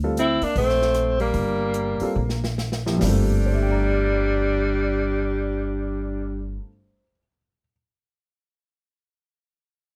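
A short cut from a longer modal jazz piece in G dorian opens on a Gm11 chord from a warm baby grand piano and a woody, pizzicato upright bass on gut strings. A clear tenor saxophone carries the melody in scooped, vibrato-laden notes, while a breathy alto saxophone in subtone traces a second line alongside it. The swung 4/4 feel, around 135-158 BPM, is slowing down through the opening seconds, and an airy acoustic drum kit of hi-hat, rim click, snare and toms plays a fill before dropping out at 3.1 seconds. The hypnotic, intense mood is caught with close, detailed microphones and light reverb, and the piano rings on alone from 6.6 seconds to the end at 7.7 seconds.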